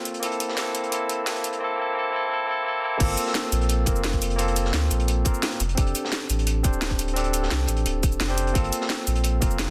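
Liquid drum and bass at 173 BPM in G dorian, lush and dreamy, this excerpt opens with a barky, lightly overdriven tine electric piano up front, heard through a combo amp with digital delay, over an overdriven drum and bass kit with a cracking snare, bright hats, cabasa and crash, and a dark, gritty breakbeat kit with a high-tuned snare sitting in the background, until the drop at 3.0 s brings in a tight, layered electronic kick and a deep, round sine sub bass up front beneath a rootless Gm11 and an F69 chord, all within a dense, heavily limited master with light reverb.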